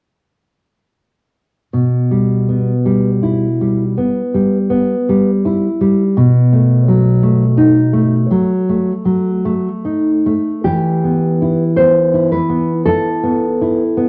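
Wet studio reverb with a 0.6-second decay surrounds two up-front nylon-string guitars in this yearning, solemn romantic duo in E minor, moving freely in 4/4 at 48-58 BPM. A dark, full-bodied, thumb-plucked accompaniment enters at 1.7 seconds in the low register, moving from Em/B to B7 and back to Em. At 10.6 seconds a second classical-toned guitar adds a higher melody that continues until the cut at 14.1 seconds.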